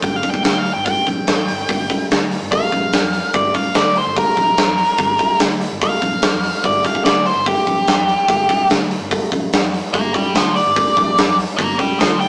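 An octave-fuzz lead guitar takes a solo across the whole 12.3-second excerpt, its dark, picked tone sitting up front between G4 and Bb5 over a heavy, brooding Gm groove at 145 BPM in straight 4/4, blending blues rock power-trio grit with southern rock. A huge arena drum kit drives underneath with a punchy kick, medium-tuned snare and hi-hat in a big room, while a vintage foam-muted fingered bass adds a round, amped low end from the background. The rough rehearsal-room recording has a small-speaker sound and light reverb.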